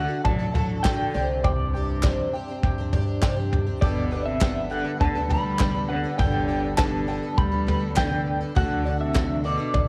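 A homey cassette recording with studio room ambience carries this uplifting, nostalgic indie folk excerpt at 101 BPM in G major, where a slightly broken-up electric guitar with tremolo sings the melody over a rich, bowed cello line with vibrato and portamento, a shimmering octave-doubled twelve-string acoustic guitar, a reedy harmonium breathing sustained chords, a plunky fingerpicked banjo and a woody pizzicato upright bass, while a dark, up-front brushed drum kit enters at 0.2 seconds and crisp, dry group handclaps join at 0.8 seconds as the chords move from D through Csus2 and Gadd9 back to D.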